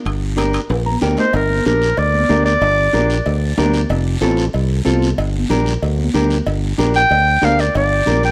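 This cumbia excerpt, cut from a longer piece, moves at a driving 187 BPM in 4/4 with a straight feel, its passionate mood anchored in G minor as the harmony shifts from G minor to F and back. A growly, punchy fingered electric bass sits up front, with raspy, dry guiro close by, ringing metal-shell timbales and cowbell in the background, and bright, high-tuned congas heard very quietly from a distant, large room. A dark, clean electric guitar, played with the fingers and coloured by spring reverb, supplies the accompaniment, and a drum fill paired with a guitar fill at 0.7 s carries the music into the second section. The clear, classical-style clarinet takes the solo melody up front from 1.2 s, trailed by tape echo, then returns at 7.0 s. Light reverb gives the whole a touch of space.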